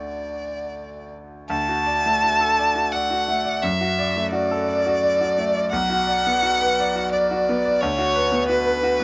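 Tender and warm, this short passage cut from a longer romantic classical duo unfolds in a three-beat lilt with uneven, rubato timing. A single bowed violin carries the melody up front with a rich, focused tone and vibrato, while a bright grand piano accompanies with brilliant, polished long sustain and audible action noise. A light reverb lends the intimate pairing a gentle sense of space.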